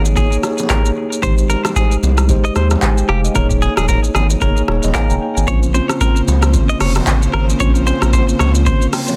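A mellow tine electric piano and a thick, saturated sub bass open this sunny, joyful afrobeats clip, with a booming analog drum machine arriving at once: deep kick, metallic hi-hats, handclaps, rim clicks and shaker, its snare softly clipped and its tape-tinged sound placed up front alongside the bass. A bright, twangy clean electric guitar, recorded direct and compressed, plays a picked riff touched with delay, while congas and bongos sit distant in the background with hard hands in a large room. The groove swings on the sixteenths, and the chords move from a suspended dominant colour to a major seventh and back again before the electric piano, heard as if through its built-in speakers, adds a fill at 4.4 seconds. At 5.5 seconds a smooth, bowed studio string section slips in behind everything with vibrato, holding sustained chords as the harmony moves to a minor added-ninth sound. The mix is dense and heavily limited, wrapped in digital ambience, and this excerpt is cut from a longer piece.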